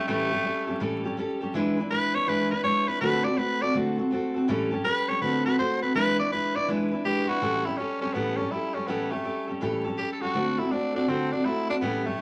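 A raspy, gritty tenor saxophone leads this rowdy, retro rock excerpt, soloing up front with bright vibrato and a punchy pop edge from the start until 7.4 seconds, where the music moves into a new section. Beside it, a full-bodied picked steel-string dreadnought guitar plays the accompaniment at 164 BPM with a swung feel in A mixolydian, moving through A7, E7 and D7 chords. The pair sits in a wet large-studio reverb under a layer of vinyl crackle, and the clip is cut from a longer piece.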